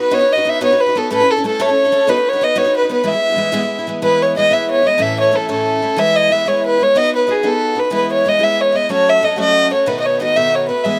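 A dark, woody fiddle carries the melody up front from the start, bowed by a single player with light vibrato, while a picked twelve-string acoustic guitar shimmers beneath it with bright, octave-doubled fresh strings. This rollicking, lively Celtic jig moves at 123 BPM in 6/8 and E major, its chords shifting among B, A and E before reaching F#m and closing on B7 at 9.9 seconds. The sound is dry and close, caught outdoors with little reverb, and the passage is cut from a longer piece.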